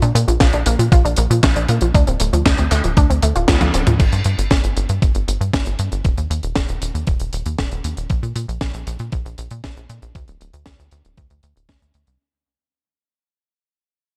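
A nasal, wave-folded analog pluck plays chorused, tape-echoed arpeggios over a punchy sawtooth sequencer bass and a tight, mid-forward funk kit with a high-tuned snare and handclaps, while a thumpy, sampler-style kick joins at 0.4 seconds in this bittersweet, nostalgic italo disco excerpt. Over a Bb to Dm7 progression, a drum fill and band accent land at 3.5 seconds, and the pluck drops out at 3.9 seconds. Bass and drums then carry on through a long fade, set in a dark production with light reverb.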